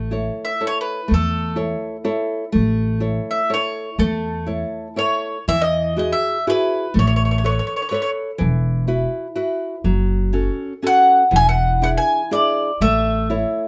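A lightly reverberant, close-up acoustic sound frames this short, romantic and sunny Italian folk serenade, cut from a longer piece, in a lilting 3/4 at 124 BPM with a gentle swing and rubato feel. A bright, fingerpicked classical nylon-string guitar and a thumpy pizzicato upright bass carry the accompaniment throughout, while a woody, double-strung mandolin sings the picked melody up front. The music moves from A major into E major at 5.5 seconds, and later the mandolin drops out at 8.1 seconds, returning at 10.9 seconds as the harmony turns from F#m to E7 before settling back on A.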